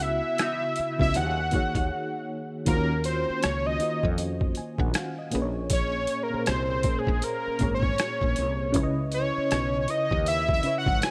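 Late-night and smooth, this brief neo-soul R&B excerpt moves at 79 BPM in Eb dorian with a swung sixteenth feel, built on a gritty, overdriven boom bap drum kit of thumpy kick, hi-hat and rim click, a growly fretless bass and a tremolo-laden FM electric piano moving through minor eleventh and ninth chords. A dark, clean electric guitar with wah and delay appears briefly in the background from 0.4 to 1.4 seconds. The fat, nasal analog lead, with its detuned sawtooth, sub octave, ring modulation and vibrato, carries the melody from the start, and after a short break it takes an up-front solo from 2.7 seconds onward. The sound is bright and 1980s-style digital, with light reverb.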